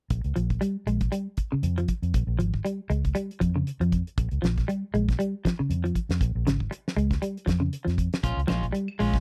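A dark, round, foam-muted fingered bass sits up front in this hypnotic, defiant afrobeat excerpt at 118 BPM in Bb dorian, holding a single Bbm7 with a damped 70s drum kit whose fat snare and tight kick swing lightly on the 16ths. A clean picked electric guitar with lush chorus plays arpeggios from 0.4 seconds, and near the end a slightly broken-up guitar adds stabs from 8.2 seconds while woody claves in the background and very quiet ringing congas enter at 8.5 seconds. The sound is a dry, close 1970s-style studio recording with little reverb.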